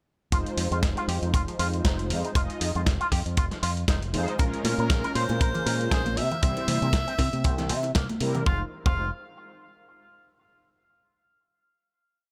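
Cosmic and groovy, this nu-disco piece rides a tight four-on-the-floor kick and a gritty, sampler-style kit of snare and hi-hats under a punchy, octave-jumping fingered bass with an envelope filter and tube saturation, a twangy, clean guitar riff through an envelope filter and lush chorus, and dark, detuned, sidechain-pumped synth brass chords, with bongos and congas joining in the background at 4.4 seconds and a bright tenor saxophone adding hook phrases with dub echo from 4.6 seconds before the piece settles on a final chord at 8.5 seconds.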